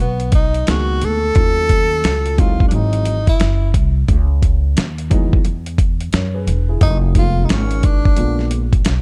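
This is a cool, mellow jazz-hop excerpt from a longer hip hop piece, moving at 88 BPM in 4/4 with a 62% swing on the sixteenths. A breathy tenor saxophone carries the melody from the opening, its soft attack, vibrato and scooped notes giving it the voice of a jazz solo. Underneath, a woody pizzicato upright bass with steel strings sits up front. At 0.2 seconds it is joined by a gritty, compressed sampler-style drum kit with a thumpy kick, a medium-tuned snare and hi-hat, the loudest of the parts. A boxy grand piano with long sustain enters at 0.7 seconds as quiet accompaniment, following chords that move from G#m9 through C#m11 to A#7b9. The production is dark and warm, set in studio reverb.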